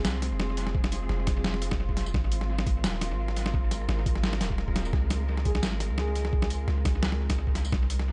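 A dark, tense half-time drum and bass excerpt at 172 BPM opens on Fm with a deep, decaying sine 808-style bass, veiled con sordino cello chords carrying 12-bit sampler grit and sidechain pumping, an up-front boom bap kit of hi-hat, medium-tuned snare and tambourine with dub echo, and a breathy flute-like synth lead in the background that returns at 5.5 seconds, while a thumpy, pitched-down electronic kick joins at 0.7 seconds as the chords move to Ab and Db in an echo-heavy, lightly reverberant mix.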